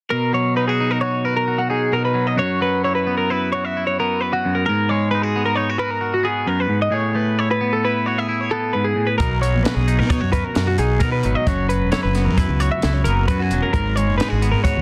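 Bright, clean, twangy picked electric guitar accompaniment and a twangy, compressed twelve-string arpeggio figure open this intricate, playful math rock and midwest emo passage in 5/4, cycling through lush major-seventh and ninth chords until a growly, fuzz-overdriven fingered bass and a small, dark cocktail drum kit with a high-tuned snare and punchy kick join at 9.2 seconds under light reverb and a dense, heavily limited master.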